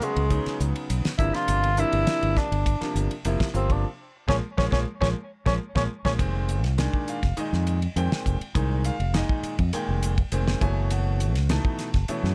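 A breathy tenor saxophone, a bright grand piano and a damped 70s drum kit start together in this slick, funky slice of electric jazz fusion, cut from a longer piece, with a fretless electric bass joining at 0.2 seconds. The saxophone carries the melody up front in a jazz-style solo, its subtone voice sounding distant and roomy, until it drops out at 6.1 seconds. Beneath it the piano comps with a brilliant, open tone and long sustain through chords such as Db7sus2, Gm7, Bbm7, Fm9 and Gbm7. The dry, acoustic kit sits forward with a fat snare, a tight kick, hi-hat and ride, while the punchy, warm fretless bass is heard direct and amped, close in the mix. Near the end of the opening half the band hits a shared accent, capped by a drum fill leading into a second section where piano, bass and drums carry on, all captured with little reverb.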